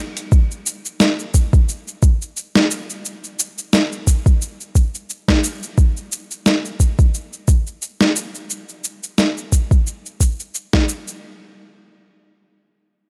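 This short cut from a longer piece has a dry, gritty hardware sound set in a digital ambience, with a hypnotic, meditative downtempo groove at 88 BPM in 4/4 and a light swing on the 16ths. A dusty soul sampler-style drum kit carries hi-hat, shaker and snare, its compressed, overdriven tone placed up front in a small room, with a medium-tuned snare kept at natural pitch. Alongside it, an electronic kick drum gives a soft, produced thump, also pushed up front with overdrive and the same small room ambience, and it sits louder than the kit. The kit plays from 0.2 s to 11.2 s, the kick stops at 10.9 s, and a brief closing section follows from 11.2 s.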